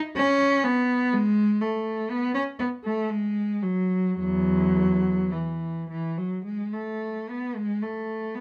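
In a flexible, rubato three-beat metre, this radiant, dance-like baroque-style suite movement for unaccompanied cello unfolds as a brief fragment cut from a longer piece. A single bowed cello plays solo from 0.2 to 8.4 seconds, ranging from E2 up to C#4, its rich, smooth tone carried by vibrato and an even touch. The cello sits up front yet with a slightly distant quality, framed by light reverb.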